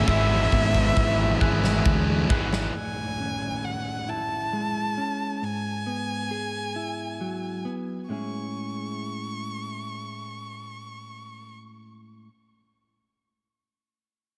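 A soaring, euphoric post-rock passage in 6/8 at a slow 45 BPM in A major opens with a close, up-front bowed violin with vibrato carrying the melody over dark, compressed arpeggios from a clean electric guitar, both touched with tape echo. They are joined by a hall-sized arena drum kit playing a fill with punchy kick and snare, a growly fuzz bass, a crunchy overdriven guitar riff in the background, a bright, tight distorted guitar riff, and soft, bell-like glockenspiel arpeggios struck with rubber mallets. These parts drop away at 2.7 s, and the violin and guitar continue in a dry mix as the chords move between Eadd9/G# and Amaj7. The violin ends at 11.5 s, and the guitar finishes this section cut from a longer piece.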